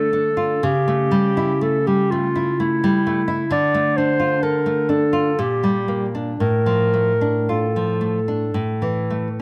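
A mellow clarinet carries a solemn, elegiac melody up front in this romantic duo excerpt in D minor, set in a slow, rubato 3/4 at 53-66 BPM. Beside it, a warm, fingerpicked nylon-string guitar supplies classical accompaniment through harmony moving from Dm and A7/C# toward Gm/Bb and a closing A5. The clarinet falls silent at 9.1 seconds while the guitar rings on to 9.4, all captured with close, detailed microphones and light reverb.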